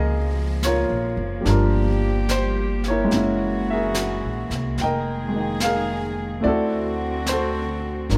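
A smoky, intimate jazz ballad opens with baby grand piano, cello section and upright bass sounding together at a slow 72 BPM in 4/4, the eighth notes carrying a gentle swing. The piano plays accompaniment up front with a natural, short-sustained tone, while the bowed cellos hold sustained chords with light vibrato and a reedy, gut-string, period-style colour. The pizzicato upright bass sits close and woody in its low register, its steel strings giving it a warm tone. At 0.6 seconds a brushed drum kit joins on snare and hi-hat, its medium-tuned snare heard in a small acoustic room. The harmony moves through Gbmaj9, Gm7, Gb9 and Fm11 before landing on D7, and light reverb softens the whole of this brief passage cut from a longer piece.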